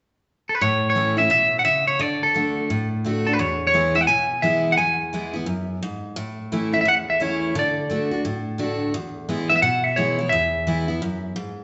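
Country with a heartfelt, easygoing swing, this brief cut sets a twangy clean electric guitar carrying the melody through tape echo from 0.5 seconds, over a full-bodied picked steel-string dreadnought whose finger squeaks show through as it picks out the A, D and E changes, both up front in a wet recital-hall reverb with a dulled top end.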